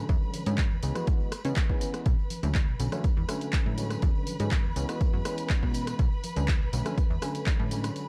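Nostalgic and groovy, this short cut from a longer filtered disco house piece moves at 122 BPM in a straight 4/4, sitting in B dorian with a chord cycle of E13, C#m7 and Bm9 that repeats twice across its roughly eight seconds. An overdriven electronic kick sits up front with a punchy, roomy thump, joined by an analog drum machine carrying handclaps, hi-hat, rim click and tambourine, its overdriven hats and percussion pumping with the sidechain. A plucky analog bass, funky and sawtooth-edged with a moving notch and quick decaying notes, carries the low end and drops out at 7.9 seconds. A clean tine electric piano plays the accompaniment through a phaser with sidechain pumping, while a lush, bowed violin section holds soft-attacked sustained chords with vibrato high above, also breathing with the sidechain. Very quiet, band-limited tambourine and congas add a vintage acoustic shimmer, and the whole mix sits in a dark, digital ambience.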